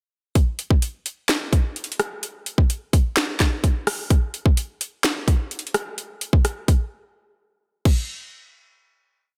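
A trap drum kit carries this short, complete hip hop piece, with a hard-clipped kick, a sharp snare layered with finger snaps, and metallic hi-hats that break into fast rolls. The mood is menacing and melancholic, set at 128 BPM in 4/4 with a half-time feel. The electronic, produced kit sits up front with a tape-warm character, and crash cymbal and rim clicks round out the pattern. It plays the hook from 0.4 seconds, with a break at 6.9 seconds before the drums stop at 8.0 seconds. A final hit section runs from 7.9 to 9.4 seconds, and the whole recording is set in light reverb and digital ambience.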